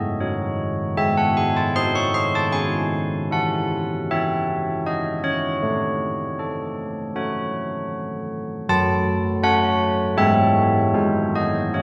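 In a straight, unhurried four-beat pulse, a solo carillon plays a wintry, solemn church-bell tune in classical style, its dark bronze tone carrying a minor-third overtone and the knock of a worn iron clapper. The bells sit up front yet are heard from further back in a concert hall whose long, wet reverb lets each stroke ring on, while the harmony moves from a suspended opening through minor chords and settles on G# at 11.0 seconds in this short passage cut from a longer piece.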